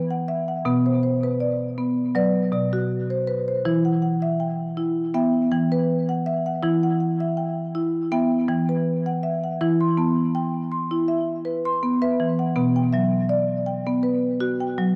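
Set in a relaxed 4/4 at 81 BPM with a light swing on the sixteenths, this gentle, meditative world piece unfolds in E minor, tuned slightly sharp at A4 = 441 Hz. A solo marimba played with medium mallets carries the whole 15-second passage, its rosewood bars giving a woody, up-front tone that spans from B2 to C6. A diffuse ambient delay trails the marimba, and the recording sits in a wet echo chamber with a small room ambience, lending the dark production a soft glow. The harmony moves between E minor and B minor, settling back on E minor at 3.6 seconds before turning to B minor again at 12.6 seconds. A second section begins at 9.6 seconds and carries on until the cut from the longer piece.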